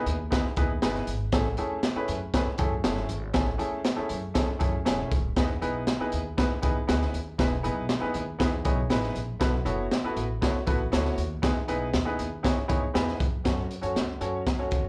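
Danceable and warm, this uptempo 1960s-style soul excerpt at 119 BPM in E major sets a clear, slightly detuned upright piano with slapback echo and long sustain over a thumpy, dark pizzicato upright bass on gut strings and a gritty, saturated breakbeat kit with a punchy kick and high-tuned snare, all heard as a live gig through the venue's PA with club reverb, moving from Emaj7 and Amaj7 through B7sus4 to a closing turn to F#m at 13.5 seconds.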